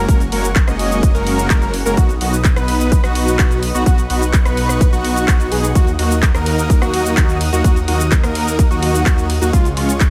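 A lush, chorused pad, a nasal, warbling unison lead spinning arpeggios with delay, huge detuned supersaw chords riffing, and a menacing, beating saw bass all pump to the sidechain from the start of this euphoric, anthemic festival progressive house excerpt at 127 BPM, joined at 0.1 seconds by an overdriven big-room kit of handclaps, hi-hat, ride, rim click and shaker and a punchy, up-front electronic kick, moving through F#add9, B, D#m and C# in a dry sound.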